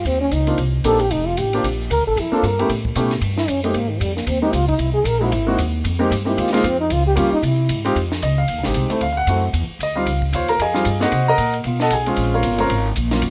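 Light reverb frames this moody, late-night clip of small-group swing and bop in F minor, moving at a brisk 228 BPM with swung eighths. A dark, roomy trombone with vibrato takes the solo from the start, sitting distant behind an up-front, woody, thumpy pizzicato upright bass on gut strings and an intimate concert grand whose action noise, deep bass and long sustain come through clearly. A dry, compact cocktail kit adds shadowed cymbals, a high-tuned snare and punchy kick, and after the trombone drops out at 7.9 seconds, piano, bass and drums carry the next pass through the chords to 13.3 seconds.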